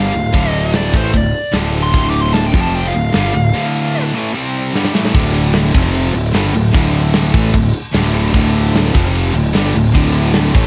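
A dark, smooth lead guitar solo opens this menacing, heavy hard rock excerpt, its overdriven tone trailed by digital delay, while three picked rhythm guitars play the riff beneath it: a bright, cranked stack guitar and a tight distorted guitar in the background, and a double-tracked, hollow-bodied semi-hollow guitar, very quiet and overdriven. A fuzz-soaked, growly electric bass sits up front, its direct-and-amped sound adding overdrive to the low end. The acoustic metal drum kit arrives at 0.3 seconds with kick, snare, hi-hat and crash, sounding big-roomed and mid-forward, with a medium-tuned snare and a tight kick placed up front. The solo ends at 4.0 seconds, and a drum fill at 4.7 seconds leads into a second section where the guitars and bass carry on with the riff, moving between power chords. A small room reverb gives the mix a close, compact space.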